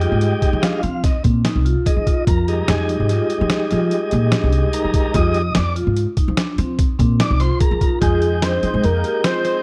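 Set in a straight 7/4 at 146 BPM, this tense, brooding progressive instrumental in F dorian rests on a gritty, pitched-down sampler-style drum kit with a thumpy kick and a woody, dark pizzicato upright bass, both up front in a dry, close 1970s-style studio sound. Over an Fm7 chord, a clean tonewheel organ with key click and fast rotary speaker takes the lead as a solo until 8.0 seconds, while a vibraphone played with medium mallets, motor off, adds airy, ringing arpeggios through tape echo. At 8.0 seconds a fat, detuned sawtooth analog lead with chorus and vibrato enters for the closing moments of this short cut from a longer piece.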